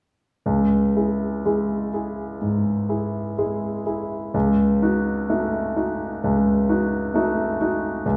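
Rubato in 4/4 at a slow 58-67 BPM, this yearning, wistful romantic nocturne in C# minor features a solo concert grand piano, clear and polished with deep bass and short sustain, moving from C#m to D#m7b5/C# at 4.3 seconds, its present tone set within a wet recital hall reverb heard from further back in the room, in a brief cut from a longer piece.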